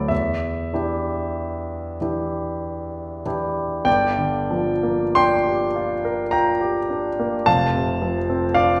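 A clear concert grand piano opens alone on an Em7 chord, its deep bass and long sustain ringing through a hazy, wistful impressionist passage in slow, rubato 3/4, roughly 44-57 BPM. At 3.9 s the harmony shifts to G minor with a Gm7, and an F6 arrives at 7.5 s in this short section cut from a longer classical piece. The piano sits intimate and up front, with audible action noise, inside a wet recital hall reverb that gives the sound a sense of the room heard from further back.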